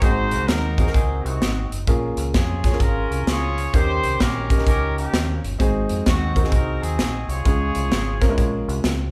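A live band fills a large studio room with moderate reverb in this hopeful, jubilant uptempo gospel cut, swinging in 4/4 over a progression that moves from Ab7 through Bbm7 and Eb7 to Dbmaj7. A clear, distant horn section carries the melody with light vibrato and a soft, tight jazz-style attack, while a woody, natural upright piano supplies accompaniment. Underneath, a dark, round fingered electric bass pairs with an up-front, polished and airy acoustic drum kit of punchy kick, medium-tuned snare and hi-hat, all playing throughout the roughly 9-second excerpt cut from a longer piece.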